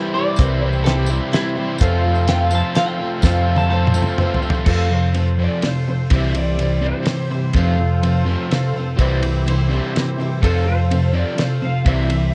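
A straight 3/4 pulse at 125 BPM carries this nostalgic, open-road folk rock and heartland rock passage in F major, moving between C and F chords. A shimmering, octave-doubled twelve-string acoustic, a reedy musette accordion in the background and a crunchy, double-tracked overdriven riff guitar run throughout. They are joined by a round, up-front fingered bass and a dry 70s drum kit with a fat snare and dark cymbals, while a clean electric guitar solos over a very quiet grand piano and a jingly tambourine in the opening seconds, capped by a drum fill. At 4.7 seconds a lo-fi lead guitar through a small cranked amp takes the melody, and worn, warbling cassette tape drift and light reverb color the whole recording.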